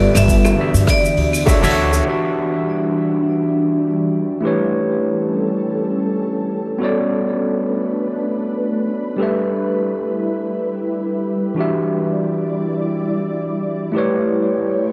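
A lightly swung 101 BPM groove in 4/4 opens this wistful sunset chillout passage in E dorian, where a brief, ringing vibraphone melody with hard mallets and delay, a woody pizzicato upright bass, a deep layered electronic kick, distant high-tuned bongos and a brush kit with dark cymbals, cabasa, claves, hi-hat and rim click all drop away by 2.2 s, leaving the barky, overdriven tine electric piano with tape echo and the ethereal, detuned pad with chorus and a filter sweep from 2.1 s to carry chords such as Em7, A7 and Bm7 through a lush hall reverb until 14.9 s.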